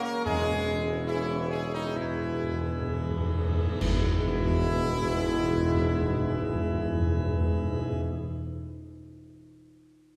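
Heard from further back in a reverberant scoring stage, this solemn, triumphant classical fanfare excerpt in E major moves at a stately 62-76 BPM, slowing through its opening as bright trumpets carry the melody over mellow, distant French horns, soft-edged trombones and a full, brilliant plenum pipe organ. A warm tuba sits in the background on the bass, while close, dry calf-head timpani sound up front with a fill from 2.0 seconds, and a cymbal swell, clash cymbals and concert bass drum, entering at 0.3 seconds, help drive a band accent at 3.8 seconds.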